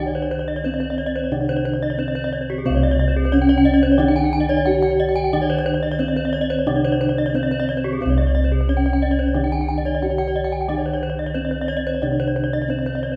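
A straight, even four-beat pulse carries this short, ceremonial slice of Balinese gamelan, cut from a longer piece and holding a single section for about 13 seconds. The melody sits on a bronze metallophone struck with padded disc mallets, giving it a mellow, soft ring and a boxy, small-room closeness. Beneath it, a lower metallophone played with a wooden mallet carries the accompaniment. Two higher metallophones add arpeggios with horn mallets, sounding bright and airy; one of them enters at 0.1 seconds and stops at 13.0. Bossed gongs hold the bass with a round, beating tone placed up front. The paired tuning of the metallophones sets off shimmering beats, and a reverberant recital hall wraps the ensemble in a lingering glow.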